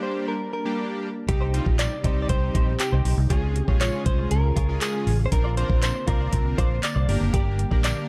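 A round, punchy, foam-muted electric bass with sidechain pumping, an electronic R&B kit of knocking kick, metallic hats and handclaps, and a second clean guitar riff with ensemble chorus drive this energetic 119 BPM dance-pop excerpt in C minor once they arrive at 1.3 seconds. They join a fat, detuned sawtooth polysynth and an airy, breathy pad (both chorused and pumping) and a clean, picked, direct-recorded guitar melody with delay. A jingly tambourine sits in the background from 1.8 seconds, and light reverb gives the production a dark, warm sheen.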